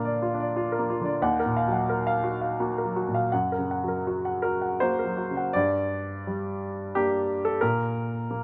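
Recorded with light reverb and a clear, present, up-front sound, this brief, melancholic and reflective neoclassical minimalist piano excerpt, cut from a longer piece, features a solo grand piano in 3/4 at a rubato 79-92 BPM, moving from Bb through Ebmadd9 and F# before settling on Gm around 5.5 seconds, and spanning Eb2 to Gb5 over its 8.4 seconds.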